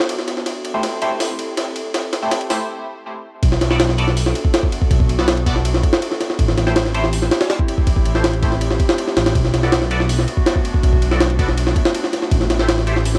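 A straight 4/4 jungle groove drives this atmospheric, frenetic drum and bass passage, cut from a longer piece. Its sampler-style kit is pitched up, compressed and gritty with overdrive, with a thumpy kick and a high-tuned snare sitting up front, all thinned by high-pass filtering. A warbling, nostalgic pad of sustained chords glows in the background with chorus, reverb and lo-fi tape character, filter-swept through the opening build-up. At 0.7 seconds a band-passed, nasal chord stab enters, bright and full-bodied, its plucky, decaying hits coloured by phaser, tape and dub echo. After a drum fill and a short break at 2.7 seconds, the drop lands at 3.4 seconds with a deep, rumbling detuned saw bass that beats darkly beneath the harmony, which alternates between Am7 and Bm7. The whole piece has the hazy feel of a home cassette recording with light reverb.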